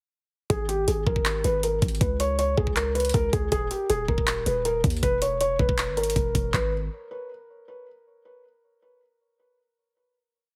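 A felt-muted upright piano leads this eerie, menacing trap piece, its dark, intimate loop carrying audible action noise and a touch of delay as it repeats like a sample in G# harmonic minor at 159 BPM with a half-time feel. Beneath it, a deep, boomy 808-style bass with a sine core and a noise layer holds long sub-bass notes that follow the kick and slide in pitch, while an electronic trap kit sits up front with knocking kicks, handclaps and metallic hi-hats with fast rolls. The short hook runs from 0.5 seconds to a final chord at 6.5 seconds, and the dry mix has a heavily compressed, radio-like sound.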